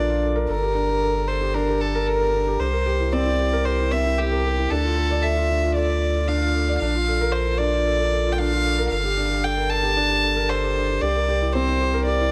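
A felt-muted upright piano, its riff softened by thick felt and touched with delay and audible action noise, opens this intimate, hypnotic piano and strings electronica fragment at 114 BPM in 4/4, alongside a round, sine-like sub bass and a solo bowed violin. The violin carries the melody up front with an airy bow, pure and boxy in tone, floating over chords that move from Gmadd9 through C7, Dm and Bbmaj7. Light reverb and a studio ambience frame the parts, with the piece tuned to A4 = 442 Hz.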